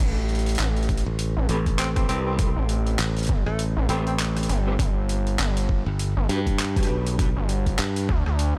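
A swung sixteenth-note groove in 4/4 drives this short glitch hop fragment, playful and swaggering in mood. A gritty, saturated synth bass with an aggressive sawtooth and ring-modulated edge opens the clip. It is soon joined by a pitched-down, overdriven sampler-style kit of handclaps, hi-hat and rim click and a thumpy electronic kick, both set in a small room. A bright, growly fingered electric bass sits up front beside the synth, while a dark, clean electric guitar adds very quiet stabs. From 1.8 s to 4.1 s a breathy tenor saxophone plays a brief solo melody in the background, its subtone and scooped notes roughened by 12-bit sampler grit and tape echo. The harmony moves from Am9 to Gmaj7 at 4.8 s, and the overall mix stays dry.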